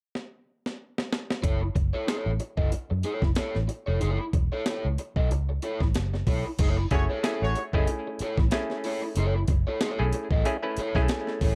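Lightly reverberant, this cool, hypnotic funk fragment at 93 BPM in F# dorian opens on a drum fill from a gritty, pitched-up, compressed breakbeat kit with a thumpy kick. At 1.4 s, a dark, foam-muted fingered bass and a crunchy, overdriven picked guitar settle onto F#m7 with a swung sixteenth feel, and at 6.9 s stringy clav stabs with tape echo arrive alongside a brief, distant, tight horn section line that is gone by 7.6 s.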